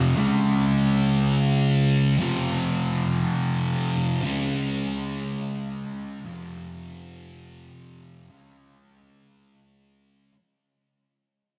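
Trippy and mysterious, this short rock fragment, cut from a longer piece, drifts at 59 beats per minute in a slow 6/8 with a straight feel, tuned to A4 = 437 Hz. A thick, double-tracked electric fuzz guitar plays alone and up front from 0.0 to 10.3 seconds, picked between F2 and Db4, with heavy distortion and a phaser coloring its tone. Its chords alternate between Db5 and F5, starting at 0.2 seconds and changing roughly every two seconds. A huge ambient reverb with a 4.7-second tail soaks the whole mix in a dreamy wash. The passage fades out across its full length, so the guitar seems to dissolve into the haze as it plays.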